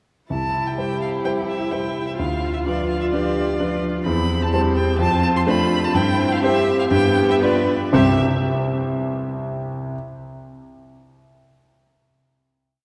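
An up-front, intimate concert grand piano with audible action noise and deep bass lays down bass and chords on the beats in this spirited, quick classical-period piano quartet movement in C major at 126 BPM, while a focused violin with vibrato bows the melody, a rich cello adds a counter-melody and sustained chords, and a background viola holds chords, the tempo slowing from 3.1 seconds into a final chord at 7.9 seconds, the strings dropping out at 8.2 seconds as the piano rings on until 10.0 seconds, the whole piece set in a dark church reverb.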